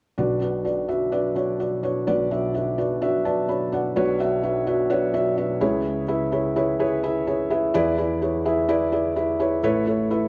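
A felt-muted upright piano plays alone in this driving, bittersweet pop fragment, its thick, dark, intimate tone sitting up front with the soft clatter of its action audible. Over an opening Bmadd9, a short piano fill at 3.0 seconds leads into a new section at 4.0 seconds, where the chords move through C#m7 and E7 to Aadd9. The recording sounds worn and vintage, bathed in a large studio reverb and the warbling pitch drift of old cassette tape.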